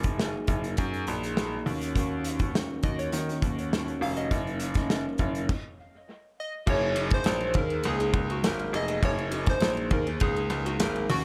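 A slightly broken-up electric guitar with subtle chorus and warbly pitch drift opens this dreamy, laid-back bedroom-pop excerpt in Gb lydian at 102 BPM, alongside a brilliant grand piano carrying the bass line with audible action noise and a loose, up-front indie drum kit with dark cymbals and a tight kick, before detuned, wave-folded analog keys take the melody at 2.8 seconds through chorus and dub echo, and the whole echo-heavy mix drops into a stop from 5.5 to 6.7 seconds before returning to the Gb69 chord.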